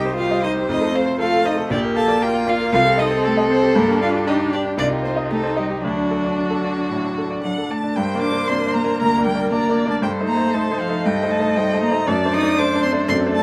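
The recording sits in a moderate studio ambience, and this short cut comes from a longer classical-period movement for piano quintet. In G minor at 117 BPM in a straight 4/4, the music feels dramatic and restless, moving through Cm, F and Bb before settling on D, then turning at 8.0 seconds to Gm, Am7b5/G and D7/F#. A focused, up-front violin carries the melody from 0.2 seconds with vibrato, climbing as high as Eb6, while a second violin, smooth and even, holds a background line. The cello shares that second line with a soft attack, airy sul tasto bowing and a close, intimate tone. Underneath, the brilliant, open grand piano supplies short-sustained accompaniment alongside the expressive viola, whose vibrato and portamento add a singing warmth.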